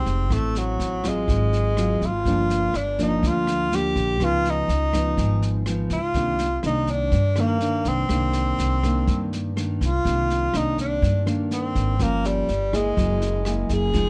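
A breathy tenor saxophone carries the melody up front in this intimate, wistful bossa nova excerpt, its mellow jazz phrasing colored by scooped notes and light vibrato. A thumb-plucked classical nylon-string guitar comps through chords such as Gm7, Db9 and Cm9, closing on Gm7b5 and F#9. A woody pizzicato upright bass with gut strings and a dark small-room brush kit of boomy kick, rim click and snare sit beneath, all under light reverb.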